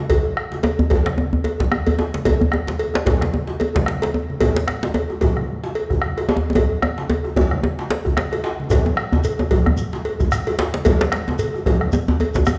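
Swung sixteenths drive this 4/4 West African drum ensemble groove at 112 BPM, a powerful, festive passage cut from a longer piece. A deep, dry djembe sits up front over a round, close bombo, while a second, band-limited djembe with metal rattles, thick-skinned, low-tuned congas heard from a distance, and a metallic cowbell fill out the pattern. A drum fill from 6.6 seconds leads into a new section at 8.7 seconds, where a grainy, mellow shekere joins, the whole ensemble set in a wet recital hall reverb.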